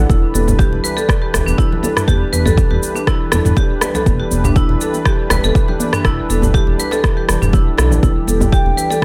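A deep electronic kick sits up front and powers this short afro house excerpt, a driving, spiritual groove in 4/4 with a straight feel. Around it, an electronic, produced afro-pop kit adds cabasa, rim click and toms, with both kit and kick set in studio reverb. High-tuned, thin-skinned congas sit bright in the background, and a very quiet djembe joins at 0.5 seconds, both played with soft hands in a live room. A dark synth bass blending sawtooth and square-wave tones with ring modulation holds the low end until 8.7 seconds, pumping with sidechain, as does a smooth, detuned analog pad that sustains an Em7 chord through chorus and tremolo. Hard-mallet marimba arpeggios ring out airy and percussive, trailed by dub echo, and at 8.5 seconds a mellow, hollow concert flute enters on a single G5 with vibrato and a tongued attack, in a room that adds little reverb of its own.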